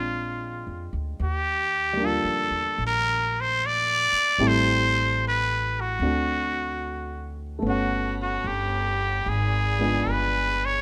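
Jazz ballad at 74 BPM with a smoky, melancholic mood, where a nasal, breathy straight-muted trumpet carries the melody up front over a dark, mellow grand piano and a woody, pizzicato upright bass, while a distant bowed chamber string section floats in with soft sustained chords at 7.6 seconds, all in light reverb.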